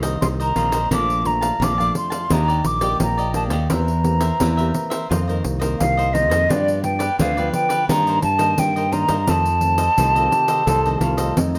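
Nostalgic yet lively, this short excerpt from a longer samba and choro piece moves at 86 BPM in a straight 4/4. A hollow, pure concert flute carries the melody up front from 0.2 seconds, its tongued notes colored by vibrato and heard close to the microphone. Beneath it, a crisp, picked cavaquinho and a thumb-plucked classical nylon-string guitar, set in the background, fill out the accompaniment, while a punchy, growly fingered electric bass sits direct and forward in the mix and a jingly pandeiro keeps close and dry. Near the end, at 10.0 seconds, a mellow trombone enters with a jazz-style second line of scooped notes and vibrato. The harmony wanders through suspended and seventh chords such as F7sus4, Bbmaj7, G7 and Cm9/G, all within a moderate studio reverb.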